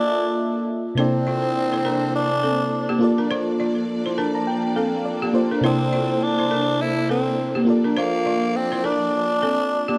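Swung sixteenths drive a 4/4 groove in this breezy, romantic afrobeats excerpt, cut from a longer piece. A growling tenor saxophone carries the melody up front from the start, its raspy, gritty tone close-miked with vibrato and a touch of digital delay in a pop-style solo. Alongside it, an FM electric piano supplies glassy, bell-like accompaniment with a warbling vintage chorus, fast decaying attacks and a faint noise layer, stepping forward with a fill between 3.9 and 5.6 seconds. From 1.0 seconds a woody balafon adds a dry, buzzing riff struck with hard rubber mallets, while a bright studio string section holds focused, bowed sustained chords with vibrato, sitting lower in the mix. The harmony alternates between Bbmaj7 and C13, framed by a moderate studio ambience and a dark, warm production.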